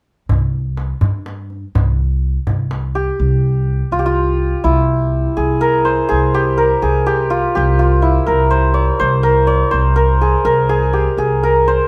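The rhythm moves in 6/8 at 83 beats per minute, counted in dotted quarters with a straight feel, in this short cut from a longer Persian modal ensemble piece set in dastgah homayun on C, tuned to A4 = 441 Hz. The opening belongs to the tombak and upright bass, the drum deep and sitting close with the live sound of the room around it, while the plucked gut-string bass gives a woody, dark, thumpy low line between C2 and G2. At 3.0 seconds the tombak stops and the hammered santur takes over the melody, shimmering and ringing up front between E4 and a microtonally raised D-flat above it, just before the shift into the piece's second passage at 3.2 seconds. The bass carries on beneath it until 11.8 seconds, giving the music a warm, passionate glow. The ensemble sounds like a band playing together in one room, touched by light reverb.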